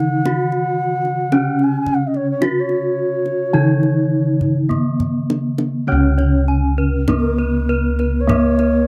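A bright bronze metallophone carries the melody up front, struck with a horn mallet, its paired tuning lending the ringing tone shimmering beats. This is a slow, ceremonial stretch of Javanese gamelan in Db slendro, moving at 50-57 BPM in a straight 4/4 and cut from a longer piece. Beneath it, a second metallophone played with a wooden mallet supplies accompaniment from the background with a vintage, band-limited color, while mid-forward bossed gongs struck with padded beaters give a round, mellow, soft bass line. A distant, airy bass bansuri traces a second line with vibrato and tongued notes, and the kendang adds deep hand drumming with a small-room sound, breaking into a fill at 4.4 s. At 5.9 s a third, close-miked metallophone enters with full, dry arpeggios in a higher register, all set within a close 1970s-style studio recording with little reverb.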